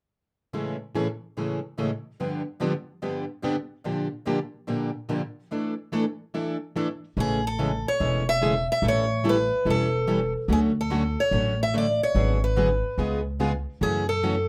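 In a moderate club reverb, this charming, swinging cut of acoustic string swing in A major at 145 BPM opens with two picked steel-string acoustic guitars comping through chords such as Amaj7, G7 and Bb6, one of them plugged in and up front with audible finger squeak, before a woody, thumpy pizzicato upright bass and a picked steel-string guitar melody enter together at 7.2 s, the guitar tones ranging from boxy, fresh-stringed parlour to bright concert.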